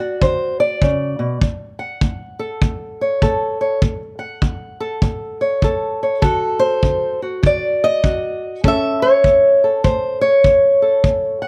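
Acoustic country blues with a swaggering, soulful mood, this short excerpt from a longer piece rides a swung 4/4 feel as a fingerpicked old ladder-braced acoustic guitar carries the melody in a dark, boxy voice, sitting up front with a touch of plate reverb. A tight, mid-forward kick drum played with brushes and a rolled-off top enters at 0.2 seconds, while the chords move between D and A in a moderate booth ambience.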